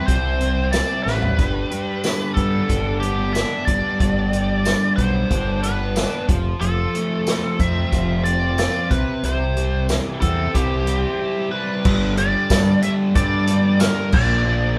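A biting, overdriven lead guitar melody and a bright, double-tracked distorted guitar riff open this sunny, confident slice of classic rock, joined almost at once by a growling, overdriven picked bass and a vintage drum kit whose drum fill at 1.1 seconds sets the band rolling over C, G and F. The kit sounds natural and up front in its studio room, with a punchy kick, a medium-tuned snare, a rolled-off top, and hi-hat, crash and splash cymbals, toms and tambourine. After a break at 11.2 seconds, a new section lands on a G5 power chord at 11.9 seconds, with the whole band captured playing live in one room in a wet studio reverb.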